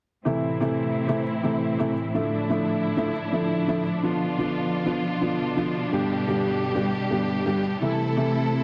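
A straight 4/4 pulse at 127 BPM drives this anthemic, powerful EDM passage in A minor, tuned slightly sharp to A4 = 441 Hz and cut from a longer piece. From 0.3 s to 8.6 s, a dark baby grand piano plays accompaniment between G2 and G4, its worn, boxy tone and short sustain sitting up front, with audible action noise and a tape echo trailing behind it. Alongside it, a symphonic string section holds sustained bowed chords from A2 to A4, lush and smooth with vibrato, its tone rounded by a low-pass filter. The harmony moves from Am to Dmadd9, Bdim and G before returning to Am at 7.8 s. A lush hall reverb with a 2.5-second tail opens up the space, and the dense, heavily limited modern master keeps the sound full and forceful.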